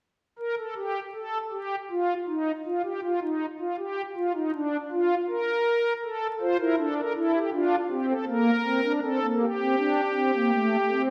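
Stately and elegant, this short excerpt from a baroque-style four-part fugue features a solo pipe organ on shimmering, soft string celeste stops, voiced romantically and placed up front, entering at 0.4 seconds and sounding through a wet recital hall reverb in a dark production touched with vinyl crackle.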